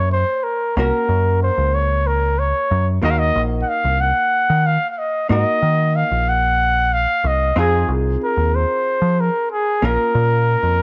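Set in a small room with light reverb, this brooding, tense progressive instrumental excerpt moves in 7/8 at 186 BPM in eighths, where a dark, up-front trumpet carries the melody in a smooth-topped classical style with light vibrato, a clean, compressed vintage hollow-body jazz guitar comps quietly underneath, and a round, amped dub bass sits forward in the mix over chords moving from Gb through Ebm and Fm7 to Bbm.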